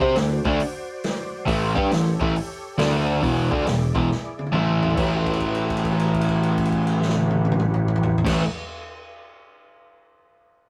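A gritty, swaggering blend of blues rock power trio and southern rock in A mixolydian, this short cut from a longer piece rides a swung 4/4 at 137 BPM, with a crunchy, double-tracked overdriven guitar riff up front over a growly picked electric bass and a vintage drum kit with a punchy kick and a rolled-off top. Behind them, an overdriven tonewheel organ holds full, percussive sustained chords through a slow rotary speaker and chorus vibrato, moving over changes like D7, A7 and E7. A drum fill at 4.1 seconds leads into a held note from 5.0 seconds on an A13 chord, all set in a rough rehearsal-room sound with tube saturation and moderate reverb.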